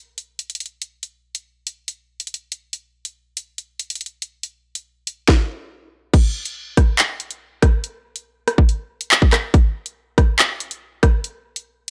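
Tense and dark, this half-time hip hop drill fragment is carried entirely by an electronic drum kit that enters at 0.2 seconds and runs to the end of the clip. The produced kit sits up front, with a hard-clipped kick, a sharp snare, warm hi-hats, rim clicks, handclaps and crash cymbal. A dry, gritty recording with a digital ambience frames the beat, which shifts into a new section at 6.1 seconds.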